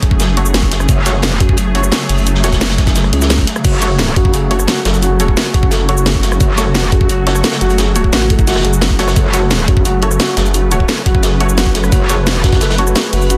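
A swarming, detuned drone pulses with sidechain pumping behind a nasal vowel-sweep wobble bass, a knocking electronic kick, a cracking, up-front drum and bass kit and a gritty, saturated breakbeat kit in the background, setting a dark, futuristic tone for this slice of technical drum and bass. From 0.4 s, bold, punchy synth stabs with an orchestra-hit character ring out with reverb and delay, and from 0.9 s a bright, metallic FM wobble bass cuts through in short recurring bursts. At 3.6 s, a felt-muted upright piano adds soft, boxy arpeggios with audible action noise and pumping delay, all within a dense, heavily limited modern master.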